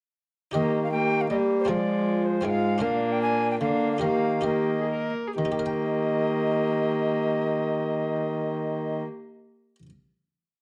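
An airy, chiffy alto recorder with expressive vibrato leads this short, courtly and festive renaissance-style consort dance in triple time, joined from the start by two gut-stringed violas (one carrying a second line with light vibrato, the other a nasal, closely heard accompaniment in sustained chords), a muted, lute-like harpsichord rolling its dry chords, and a mellow, up-front bassoon holding a sustained bass with passing notes, all slowing from about 2.3 seconds into a final chord held from 5.4 seconds in a dark production with light reverb.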